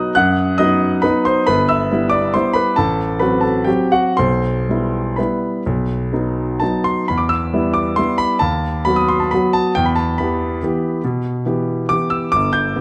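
Nostalgic and bittersweet, this short classical piano waltz moves in a supple three-beat lilt, its pulse stretching and yielding with rubato. A solo grand piano carries the whole piece, ranging from G1 up to G6, with a warm, intimate, natural tone and audible action noise, the instrument sitting up front. Close, detailed microphones capture the piano inside a moderate recital hall reverb, giving the sound a gentle sense of space around its clarity. The harmony moves among tonic, diminished and dominant chords, settling onto the tonic at 7.1 seconds when a contrasting second section begins. That section carries the piece to its close at 12.8 seconds, where it is cut from a longer work.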